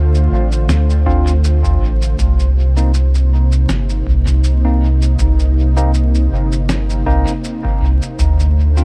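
A detuned sawtooth pad with a soft attack and a gentle chorus opens this ambient dub passage together with a round, deep sub bass that sits up front, both resting on a bed of vinyl crackle. The tempo is a relaxed 80 BPM in 4/4 with a light swing on the sixteenths, and the harmony in C dorian moves from Dm7 to Cm7 before returning to Dm7 near the close. A muffled, compressed cabasa and fat snare arrive almost at once, their sampler-style sound trailed by dub echo and colored by a small room. At 1.1 seconds an overdriven analog kick drum joins along with clean tine electric piano stabs, which also carry dub echo and sound as if heard through built-in speakers. The kick drops out at 8.4 seconds, while the mellow pad and soft bass hold the spacious, hazy mood in a dry, close sound, as this is a portion cut from a longer piece.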